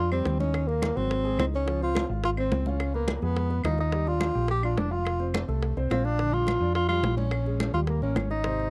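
A straight, fast 4/4 groove at 212 BPM drives this short, sophisticated and danceable slice of Afro-Cuban jazz, with woody claves and ringing, hard-handed congas set back in the small room while tight, high-tuned bongos played with soft hands sit close and dry. Up front, a round, dark hollow-body electric bass anchors the low end as a breathy tenor saxophone carries the solo melody with subtone, light vibrato and a smooth top. Behind them, a warm grand piano with a deep low register comps through chords such as Ebmadd11, Dbmaj7, Ebmaj9 and Bb6, all captured in a close 1970s-style studio sound.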